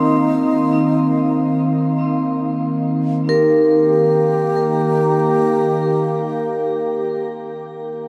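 A dreamy mix soaked in a huge, wet ambient reverb with an 8.5-second tail opens this serene ambient passage in Eb major, cut from a longer piece and moving in free time. A resonant, overtone-sweeping drone of sawtooth and sine tones sits up front between Eb3 and Bb3, with a slow attack, long release, chorus and its own reverb. Over it, a vibraphone struck with medium mallets, motor off, rings out metallic arpeggios from C4 to Bb4 through shimmer reverb and a diffuse ambient delay. A breathy, wooden-headed alto flute carries the warm melody between Eb4 and G4, its crisp attack and unsteady vibrato also bathed in shimmer reverb and delay. The harmony rests on Eb throughout, and after the flute and drone fall away at 7.3 seconds, the vibraphone rings on alone until 8.1 seconds.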